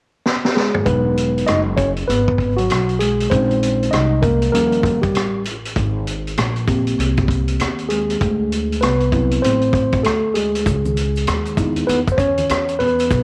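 Cool and warm, this jazz-hop excerpt sits in a swung hip hop groove with a homemade, cassette-worn character and a bed of vinyl crackle. A vintage drum kit opens with a short fill before settling into hi-hat, punchy kick, rim click, high-tuned snare and toms, its sound mid-forward and up front with a rolled-off top and a tape-dulled tone. The mellow tine electric piano takes the lead, playing clean and direct over lush extended chords such as Emaj9, A#m11 and D13, and it also carries a cassette tint. Pizzicato upright bass enters at 0.9 seconds, woody and growly with the bite of steel strings, anchoring the low end. Near the close, at 10.7 seconds, maracas and hard-handed congas slip in from the background, adding an acoustic lift under light reverb and a small-room ambience.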